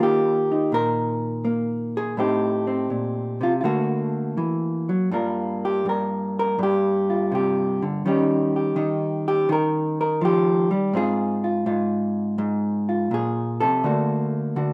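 A dark, clean, picked hollow-body electric jazz guitar sits up front in this sophisticated, relaxed solo jazz passage in Eb major, played at 83 BPM in 4/4 with a swung, rubato feel and tuned to A4 = 439 Hz. It moves through Eb, Am7b5 and D before settling into a soloing stretch from 5.1 seconds over Gm7, Eb7, Ab6 and D, ranging from G2 to Bb4. A moderate studio reverb gives the vintage tone some room, and the 14.7-second clip is cut from a longer piece.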